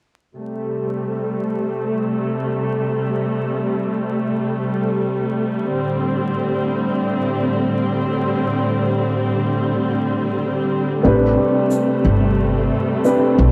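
Melancholic and cinematic, this trip hop passage in A minor drifts in free time, tuned slightly low at A4 = 439 Hz. A dark, lush studio string section enters at 0.4 seconds with bowed, sustained chords, its vibrato softened by a low-pass filter as the harmony moves from Am7 to Csus2/A. At 11.0 seconds the chord settles on Am11 and a mellow upright piano joins with long-sustaining accompaniment, colored by harmonic tremolo and tape echo, alongside a thumpy pizzicato upright bass on steel strings sitting up front. A close, dry tube shaker adds a faint touch of percussion from 11.7 seconds. Moderate spring reverb and small room ambience surround the parts, while cassette home recording and vinyl crackle lend a worn, intimate character to this fragment of a longer piece.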